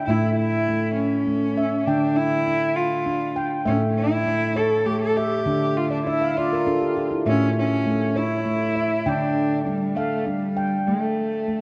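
In a steady 6/8 at 67 BPM, this gentle, meditative world piece, cut from a longer work, pairs a ringing stainless-steel handpan playing fingertip arpeggios with a dark, intimate solo cello melody bowed sul tasto with vibrato and a soft attack, both up front and trailed by a diffuse ambient delay, while the harmony alternates between A and Dm, the handpan adds a fill from 5.9 to 7.3 seconds, and a wet echo-chamber reverb and cassette-tape grain surround the whole.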